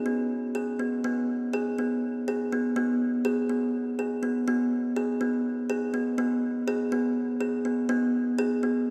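A long, wet church reverb surrounds this short contemporary instrumental excerpt, letting each note ring out in a large hall. A solo kalimba plays up front from 0.1 to 8.9 seconds, its woody, hollow-box tone bright and ringing, with a thumbnail pluck. Set in an uneven 7/8 metre with a straight feel, the music feels playful and hopeful.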